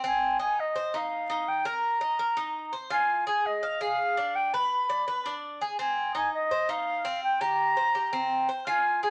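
Vinyl crackle and a moderate studio reverb surround this sultry Latin excerpt, which moves at a brisk 167 BPM in straight 4/4. An up-front acoustic Cuban tres spins bright, metallic arpeggios on its picked double strings throughout, while a reedy concert flute, airy and tongued with a straight tone, carries the melody from 0.1 seconds. The harmony circles from Ab through Fm and a rootless G#dim/D before returning to Ab.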